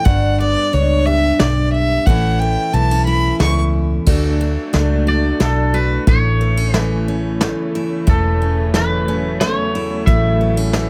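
A clear, nasal fiddle opens this sunny, down-home honky-tonk and classic country clip with a solo in 3/4, its light vibrato and focused, boxy tone sitting up front until it stops at 3.6 seconds. Underneath, a bright dreadnought acoustic guitar is picked throughout, with finger squeak audible. A dark, foam-muted electric bass gives a round, punchy low end. A vintage brush drum kit in a small room adds dark cymbals, a medium-tuned snare and a punchy kick, with a rolled-off top. At 4.1 seconds a rich chamber string section enters in the background, holding soft-attack, sul tasto chords that float with a pure sound, and at 5.1 seconds a clean, twangy electric guitar takes the melody. The close, detailed recording carries little reverb, and the passage is cut from a longer piece.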